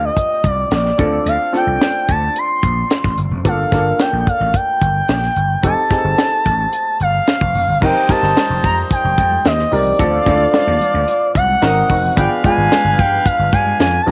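A polished 1980s jazz-funk pop clip with a light reverb and cassette-tape haze, glossy and upbeat at 110 BPM, where a smooth, sawtooth portamento lead with vibrato carries the melody up front over a warm baby grand piano, a bright, growly slap bass and a tight, dry funk kit with a high-tuned snare, joined at 7.8 seconds by a mellow, distant horn section and very quiet close congas as the chords move from Dm7 and Gm7 through F9 toward a closing G7b9.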